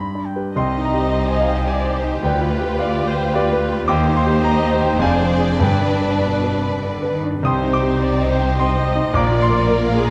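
Classical music in C minor and 3/4, moving with a rubato feel between 91 and 113 BPM, this tragic, passionate passage is cut from a longer piece. A clear, smooth concert grand piano with deep bass carries the melody up front throughout, while a warm oboe with light vibrato sounds a brief second line only in the opening 0.6 seconds. From 0.6 seconds a lush bowed string section enters behind the piano: a rich violin section sings the melody with vibrato, a focused second violin section adds a second line, and an intense viola section fills the accompaniment. Expressive cellos and soft-attack double basses ground the harmony, which moves from C minor through G7/D, a diminished chord and G before settling on Bb. Round, very quiet timpani struck with soft mallets mark a G from 5.6 to 6.5 seconds. A concert hall reverb gives the dark production a spacious, resonant sound.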